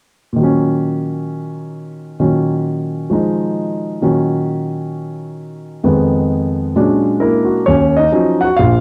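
A home cassette recording with a light touch of studio reverb frames this brief, smoky late-night fragment of solo jazz, cut from a longer piece. A warm concert grand piano sits up front, its deep bass and short sustain carrying a swung, minor-key progression from Ebm9/Bb through Fm7b5 and Bb7alt before returning to Ebm9 at 7.7 seconds, where a new section begins. The piano plays alone from 0.3 to 8.8 seconds.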